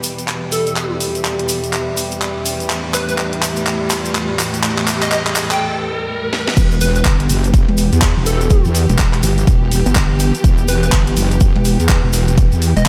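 This aggressive, bouncy bass house excerpt opens on lush, bowed symphonic strings holding sustained chords with vibrato, a cracking house drum kit of handclaps, hi-hat, snare and crash, a grainy shaker tucked behind, and a nostalgic, warbling lo-fi pad drifting in the background with chorus and phaser. At 0.5 seconds a catchy, detuned square-wave lead enters, bright and punchy with a noise layer, filter sweep, analog chorus and delay, while a drum fill drives the build-up and an electronic riser sits far back. A short break precedes the drop at 6.6 seconds, where a heavy, resonant sawtooth wobble bass lands up front alongside a punchy, tape-colored electronic kick and a very quiet, gritty sampler-style kit of ride and snare. At 7.1 seconds a second, pulsing sine wobble bass joins, saturated and compressed, and both basses and the strings breathe with sidechain pumping. The whole mix is dreamy and soaked in a lush hall reverb, with the drums carrying the sound of a large room.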